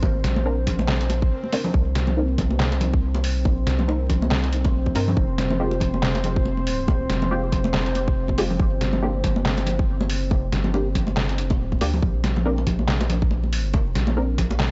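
A tight, layered electronic kick sits up front with a tape-softened punch, anchoring this dark, cavernous deep dubstep excerpt at 140 BPM in C minor, felt in half-time with a swung sixteenth lilt. A round, soft sub bass with a fast attack and tube saturation hums beneath it, while a compressed, pitched-down sampler-style kit adds muffled handclaps, hi-hat and a medium-tuned snare with a small-room character from 0.2 seconds. High-tuned acoustic congas ring out with a vintage, band-limited bite. Muted, detuned chord stabs pluck through phaser, ensemble chorus, cassette tape and dub echo, and a moody sawtooth pad holds slow-blooming sustained chords. A very quiet electronic swell marks a brief break around 1.3 seconds, and the harmony moves from Bbadd9 through Cm7, Fmadd9 and Gm before returning to Bbadd9 at 12.0 seconds. The whole excerpt sits in a gritty, dry hardware sound with vinyl crackle and a dulled top end.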